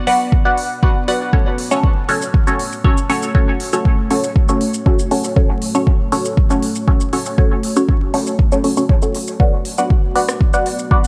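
Dub techno with a hazy, nocturnal mood, this short cut from a longer piece moves at a steady straight pulse in four. A deep, up-front electronic kick anchors the groove, while a layered deep house kit adds smooth hi-hats, rim clicks and shaker lower in the mix. Muted, detuned sawtooth and square-wave chord stabs with a sub octave sit forward, their fast-attack filter plucks colored by phaser, dub echo and sidechain pumping. Behind them, a moody, warbling pad of slow-attack sustained chords with long release drifts in the background, thickened by chorus, its own reverb and the same pumping. The harmony rests mostly on F# minor after an opening B minor, returning to B minor at 9.4 seconds, all set in light digital ambience with a layer of vinyl crackle.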